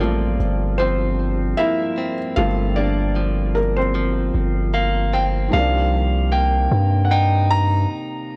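Over a lightly swung 76 BPM groove in 4/4, this late-night, sensual contemporary R&B fragment in C minor sets a muted upright piano with audible action noise against a bright, clean electric guitar playing tape-echoed arpeggios and a deep, sine-toned 808 bass up front, moving from Gm11 to Cm11 at 5.5 seconds, while a warm baby grand carries a high melody from 4.7 seconds, all captured as a dry, gritty cassette recording.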